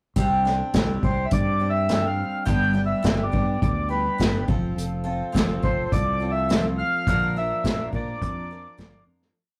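Folk rock with a heartland rock lilt, this short, hopeful piece moves at 104 BPM in a straight 4/4 in C mixolydian, its chords stepping from Csus2 through G and F to Bb. A bright, shimmering twelve-string acoustic guitar strums open chord shapes over a punchy fingered electric bass locked to the kick drum and an airy, up-front unplugged kit played with bundle sticks in a rock groove. From 1.0 seconds a reedy, close-miked accordion carries a motif-based melody, and at 4.7 seconds a breathing pedal harmonium adds a soft sustained pad in the background before the fade-out that begins at 7.1 seconds, all captured with a rough rehearsal-room feel and warm saturation.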